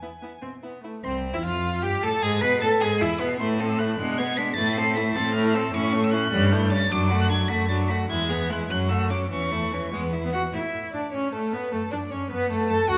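A quick classical-period movement for string quartet, this urgent, stormy passage moves at 102 BPM in a straight 6/8, counted in dotted quarters. It opens in A minor and turns to A major at 5.7 s, though the turmoil of the opening carries through. All four players sound throughout the 13 seconds. One violin carries the melody high into its upper register, and a second violin weaves a supporting line beneath it, both with a rich, focused, vibrato-laden tone. The viola's clear voice and the cello's rich bass sit up front in the balance, filling the accompaniment and the low end. A scoring-stage reverb adds a spacious, wet bloom to the ensemble, and the passage is cut from a longer piece.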